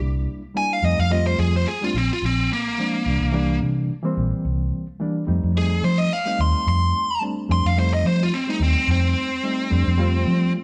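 A straight-eighth groove in 4/4, nudged by a light sixteenth-note swing, drives this laid-back, soulful soul-blues excerpt cut from a longer piece. A vintage muted, fingered electric bass sits up front from the start, its tone dark, round and punchy. Alongside it, a reedy, clean electric piano plays quieter accompaniment through its built-in speakers, shimmering with fast tremolo. At 0.6 s a bright, biting lead guitar enters with an overdriven, picked solo that takes the melody over changes moving through C7, F7 and Bb7. The same passage begins again at 5.3 s. The band sounds as if it is playing live together in a stone room with a moderate reverb.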